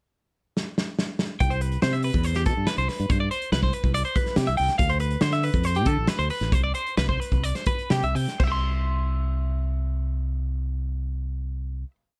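A loose indie drum kit opens with a fill from 0.6 s into a straight 4/4 funk groove at 120-142 BPM, its medium-tuned snare, tight kick, hi-hat and crash sounding acoustic and rolled-off in a small room, and the tempo slows from 4.8 s until the drums stop at 8.5 s. This short, wistful yet bright math rock and midwest emo piece in C major moves from Cmaj7 through Dm7 to a closing C chord, with a twangy, compressed twelve-string electric guitar picking a clean arpeggiated ostinato bathed in plate reverb and a growly fingered electric bass playing a syncopated riff up front. Guitar and bass enter together at 1.4 s and ring through the final chord to about 12 seconds, all within a dark, lightly reverberant production.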